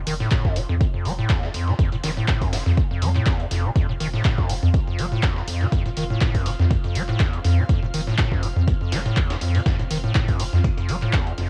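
Acid house with a trippy, playful swing, cut from a longer piece, where a squelchy, resonant square-wave acid bass riff with overdrive and lush chorus sits up front over a round, deep analog bass, an overdriven punchy kick and analog drum-machine handclaps and hi-hats, while a gritty sampler-style kit with a fat snare and a veiled, muted string section fading in from the start hover in the background, the basses, strings and sampler hats pumping against the kick and several parts carrying a cassette-tape haze.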